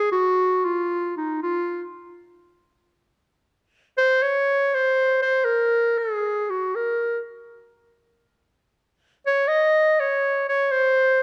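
Played in free time, this short passage cut from a longer Balkan folk piece unfolds with an unmeasured, rubato freedom and a wild, virtuosic mood. A lone clarinet carries everything as a solo from 0.0 to 11.2 seconds, moving between Eb4 and Eb5. Its tone is clear and shaped in a classical style, sitting up front in the mix. The instrument is surrounded by moderate recital hall reverb with a decay of about 1.7 seconds. The overall production leans dark and warm, giving the clear, virtuosic line a rounded setting.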